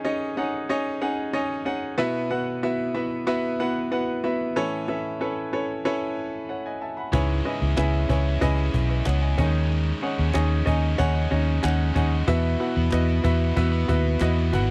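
A clear, polished concert grand piano sits up front alone over suspended chords in this driving, bittersweet piano-driven pop excerpt until 7.1 seconds, when a round, foam-muted vintage bass, a snappy close cajon, a picked, double-tracked overdriven guitar riff and, just after, a hollow group handclap join in, all captured with the dry, close feel of a 1970s studio.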